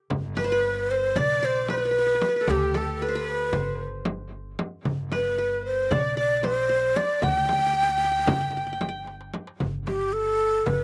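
A brisk 9/8 pulse, counted at 227 eighth-note beats per minute and played straight, drives this passionate Turkish makam ensemble piece in G makam rast, cut from a longer performance. Woody, thumpy pizzicato upright bass on gut strings anchors the low end, while a crisp metal-shell darbuka struck with hard hands sits in the background beside a warm, dry frame drum. From 0.4 seconds a breathy, end-blown reed-cane ney carries the melody up front, its tongued notes shaded with vibrato and close-miked. Beneath it, a plectrum-plucked qanun with bright-edged triple strings and a lush, focused symphonic violin section, bowed with vibrato and kept in the background, share a second line. A drum fill at 9.1 seconds leads into a brief new section, and the outdoor recording carries little reverb, keeping the sound immediate.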